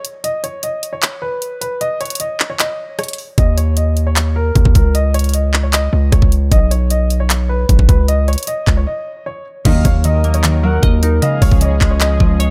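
Dark, melancholic half-time trap excerpt in which a mellow baby grand piano melody with tape echo rides over a knocking electronic drum kit of bright hats, claps, rim clicks and crash from 0.0 seconds, a heavy, saturated 808-style bass punches in up front at 3.4 seconds, and at 9.7 seconds a glassy, crystalline wavetable pluck, a smooth detuned analog pad, a gliding portamento lead with vibrato and a brief lush stab from a bowed string section fill out the dry mix.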